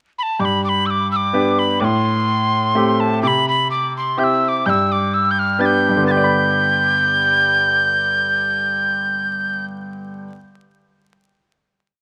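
A lilting 3/4 waltz with lightly swung eighths drives this bright, lively Celtic folk piece, where a breathy, mellow tin whistle with vibrato, crisp chiff and rolled-off highs enters at 0.2 s to sing motif-based song phrases up front over a brilliant, open grand piano whose long-sustaining bass notes and chord figures pulse through a G, Am7 and C progression to a final chord at 6.1 s, everything set in a lush hall reverb with the rough feel of a home demo and a layer of vinyl crackle.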